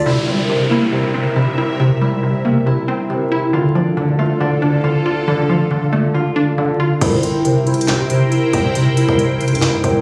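A ringing, fingerpicked concert harp plays low-passed arpeggios with tape echo up front in this dark, hard-hitting half-time trap hip hop cut at 138 BPM, joined by a hollow, bouncy square-wave pluck with chorus until 7.0 s, an evolving, resonant sawtooth pad holding sustained chords over C7 and Dm, an electronic downlifter near the start, and a growling, buzzy 808-style bass that sounds at the top and returns with a trap kit of hard-clipped kick, sharp snare, crisp hats, handclaps and crash at 7.0 s, the whole mix heard through club reverb, vinyl crackle and the character of a phone recording in the room.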